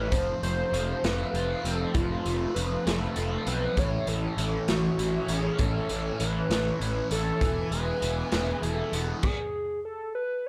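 Hypnotic and hazy, this short psychedelic rock excerpt in a straight 6/8 sets a hollow, woody square-wave lead with chorus, vibrato and slapback echo over a double-tracked fuzz guitar riff with phaser, an up-front overdriven fuzz bass, a gritty garage drum kit with a punchy kick in a pumping small room, and lush bowed strings in the background. It moves through F, A and E chords before the band stops at 9.2 seconds, the drums trailing off by 9.4 seconds, and the lead carries on alone until 10.5 seconds.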